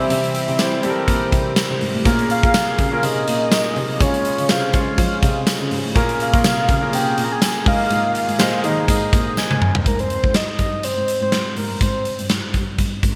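A lightly swung 16th-note groove at 123 BPM in 4/4 drives this romantic, uplifting 1980s-style pop passage in Ab major, where a round, mellow octave-layered synth lead with chorus and vibrato carries the melody over a polished, intimate concert grand piano with lush chorus, a swirling, detuned phased analog pad, a dark, woody bowed cello bass, a punchy, up-front big rock drum kit and a jingly, very quiet tambourine, with a drum fill at 9.4 s leading into a new section where the piano stops at 9.9 s, the whole mix bathed in a moderate hall reverb and bright digital production.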